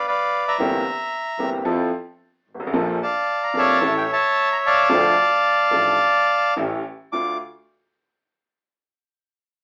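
A melancholic, dramatic tango in D minor at 111 BPM in 4/4, played with a rubato feel, in a short fragment cut from a longer piece. A reedy, airy bandoneon carries the melody up front from the very start, and at 0.6 seconds a boxy baby grand piano joins with accompaniment. A single bowed double bass sits in the background, clear and intense with vibrato. The harmony moves through G7, C7/G, Fmaj7 and Bbmaj7 before settling toward D minor by way of A7. The trio sounds like a band playing live in one room, with a wet studio reverb and the character of AM radio, and all three parts stop at 7.4 seconds.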